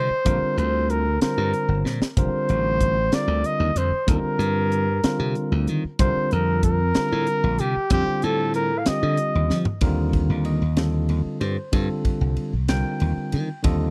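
A mellow, forceful trumpet solo with scooped notes opens this slick, soaring electric jazz fusion piece in Eb lydian, over bell-like tine electric piano and a punchy, up-front slap bass, with a crisp drum kit joining at 0.3 s with a high-tuned snare and ride cymbal. At 63 BPM in 6/8, the harmony moves through chords such as Bb69, Ebmaj9 and Csus2, with drum fills at 1.8 s and again at 9.5 s as the trumpet line ends. Piano, bass and drums then carry on over an Eb6 chord in a dry, close 1970s-style studio sound.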